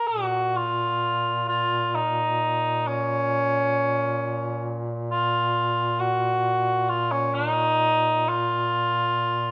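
In free time, this solemn, mournful Caucasian lament in B-flat minor, tuned to A4 = 443 Hz, opens with a dark cor anglais carrying the melody from 0.0 seconds in a roomy, classical style, held up front within a narrow range between Db4 and Gb4. Beneath it, a warm duduk enters at 0.1 seconds, sustaining a low Bb2 drone in folk style, coloured with vibrato and scooped notes. Light reverb surrounds this short section, which is cut from a longer piece.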